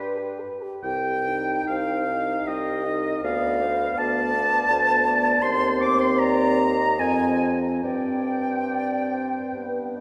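A mellow clarinet sits in the background beside a warm French horn and an up-front, softly attacked bassoon bass, opening this yearning, elegiac slow romantic movement for wind quintet in a rubato 3/4, before an airy silver concert flute with vibrato takes the expressive, tongued melody at 0.8 seconds over a clear, distant oboe second line, the whole fragment of a longer piece bathed in a wet church reverb.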